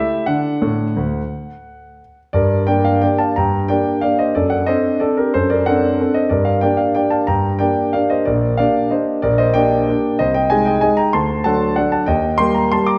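Bittersweet and wistful, this classical piano waltz in G minor moves in 3/4 with a rubato feel, its tempo drifting between 167 and 201 BPM. A solo concert grand piano carries the whole passage from start to finish, spanning Bb1 to D6 with a deep bass and a polished, present tone placed up front. A brief opening hovers on D before a longer second section begins at 2.3 seconds, settling onto G minor and passing through D7/F#, Gm/Bb and Ab/C, then turning to D7 and landing on Eb at 12.1 seconds. The production is dark and warm, and a recital hall reverb with a 1.4-second decay wraps the instrument in a generous sense of space. The recording is cut from a longer piece.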